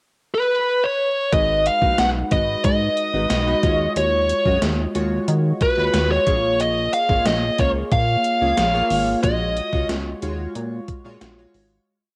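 A bluesy, overdriven lead guitar opens this short, moody 1980s-style pop piece in Eb minor at 91 BPM, sounding its distorted, motif-based phrases up front with cassette grit and analog delay over a pickup bar before the band enters at 1.3 seconds. Gated drum-machine hits with a thumpy kick and a big backbeat snare, a dark, saturated synth bass playing a syncopated pop-funk line, and glossy, chorused retro synth keys stabbing syncopated chords fill the verse as the harmony moves from Abm7 through Ebm11 and Bbm7. The dramatic home-cassette recording, bathed in moderate spring reverb, fades out from 9.2 seconds, the guitar stopping at 9.9 seconds and the keys lingering until 11.9 seconds.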